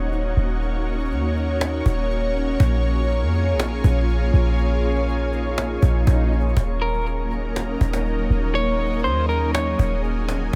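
An ethereal, airy pad and a deep, boomy 808-style bass open this hazy, spacious excerpt of atmospheric cloud-rap, moving through a half-time feel at 121 BPM in Eb minor. The pad's detuned sawtooth unison blooms slowly with a long release, its ensemble chorus and built-in reverb giving it a cloudlike shimmer, while the clean, sine-like bass hits with a fast attack and decays into dark low end, both sitting up front. A woody cajon with faint snares keeps time from 0.1 seconds, sounding acoustic and set in a small room. A very quiet electronic swell enters at 5.5 seconds, and at 6.8 seconds a dark, compressed electric guitar at the edge of break-up takes the melody, its fingered line softened by a low-pass filter and trailed by digital delay. The harmony moves between Ebm7 and Bbm7, all wrapped in light reverb.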